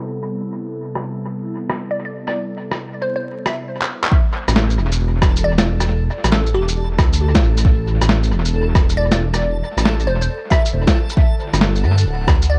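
A dry, echo-heavy mix dusted with vinyl crackle and a low-pass haze gives this ghostly, rainy slice of swung future garage its muffled, late-night air. An airy, breathy pad with chorus, phaser and sidechain pumping opens the piece until 3.7 seconds and returns at 11.2, while a glassy, crystalline wavetable pluck with chorus and analog delay carries the melody over tape-warm rim clicks, handclaps, shaker and snare soaked in dub echo. From 4.1 seconds a deep, layered electronic kick sits up front, joined at 4.5 seconds by a dark, rumbling detuned saw bass with sidechain pumping, and from 5.3 seconds a reversed, dreamy swelling texture lingers softly in the background.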